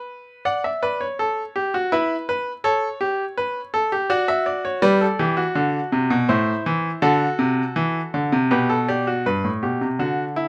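Classical music in the baroque style, this short three-part fugue for solo baby grand piano feels joyful and stately, moving in an even, straight three-beat metre. The piano sounds bright and polished, placed up front and intimate, with its short sustain and audible action noise giving every line a crisp, present edge. Its range runs from G2 up to F#5, and it is tuned slightly low, with A4 at 438 Hz. The harmony moves through D, E5, A7, D/F#, G, Am, D7 and G/B before a new section arrives at 9.3 seconds on a rootless Em/G chord. Close, detailed microphones and little reverb keep the sound dry and brilliant across this passage, cut from a longer piece and lasting about 10.5 seconds.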